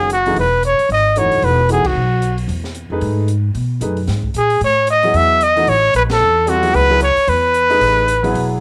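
Modal jazz with a searching, spiritual mood, this brief swinging passage cut from a longer piece puts a breathy, whispered trumpet up front on the melody, its soft attack and vibrato tinted by cassette tape. A natural-sounding grand piano with audible action noise and deep bass accompanies over Emaj9 moving to Amaj7sus2. A woody, growly pizzicato upright bass sits prominently, while an acoustic drum kit with dark cymbals, a high-tuned snare and a boomy kick, also cassette-coloured, stays low in the mix beneath band accents at 1.8 and 6.1 seconds, all in an intimate home recording with light reverb and small-room ambience.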